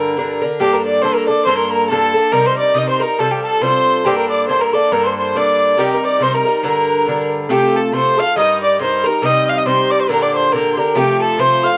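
A swung 2/4 polka pulse drives this wild Celtic folk excerpt, with a bright, metallic Irish bouzouki picking double-string chords up front beneath a dark, nasal fiddle that carries the melody with a reedy, gut-string bow tone. From 0.6 s a mellow tin whistle joins in the background on a second line, airy and chiffy, slightly unsteady and touched with vibrato, as the tune moves from its opening strain into a second strain at 7.5 s. The sound is dry and close, in the manner of a small 1970s studio room.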